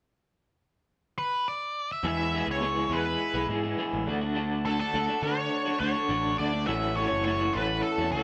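A band playing live together in one large studio room, with a moderate reverb around it, gives this short rock cut from a longer piece an immediate, roomy feel, and the mood is kaleidoscopic and hypnotic in a straight four-four. An octave-fuzz lead guitar opens the melody at 1.2 seconds, dark and distorted, pushed up front and colored by wah. At 2.0 seconds the rest of the band arrives. An electric guitar through a small old amp plays a twangy, slightly broken-up riff with tremolo, sitting forward in the mix, while a growling picked bass adds punchy, overdriven weight underneath. A vintage combo organ holds reedy, clean sustained chords very quietly in the background as the harmony moves from E to D and on to A6.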